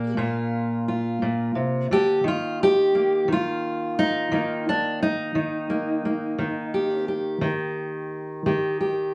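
Set in a moderate studio reverb, this swaggering, gritty acoustic country blues excerpt features a dark, up-front fingerpicked steel-string acoustic guitar playing alone in a slow 12/8 at 58 BPM, moving from Bb to Eb at 2.3 seconds.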